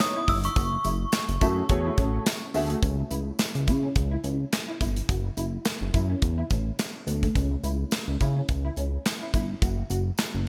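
A swung sixteenth-note groove at 106 BPM in 4/4 drives this slick, late-night slice of early-eighties boogie funk in C# minor, cut from a longer piece. A polished studio drum kit with a tight kick, medium-tuned snare, hi-hat and handclaps sits up front under gated reverb, joined by a jingly, very quiet tambourine, while a glossy chorused synth bass enters at 0.3 seconds with a mellow, filter-swept pulse-and-saw tone. In the opening bars a ringing, inharmonic FM synth chime carries the melody high up with ensemble chorus and delay, over a warm grand piano voicing lush C#m9 and F#m9 chords; the chime stops by 2.2 seconds and the piano by 2.7 seconds. From 2.8 seconds the harmony settles into a plainer C#m to F#m7 vamp, with a dark, slightly broken-up fingered electric guitar riff carrying on under chorus; the chords drop out at 9.6 seconds, and the guitar plays on until 10.2 seconds. The bright 1980s-style digital production frames it all in a light, small-room ambience.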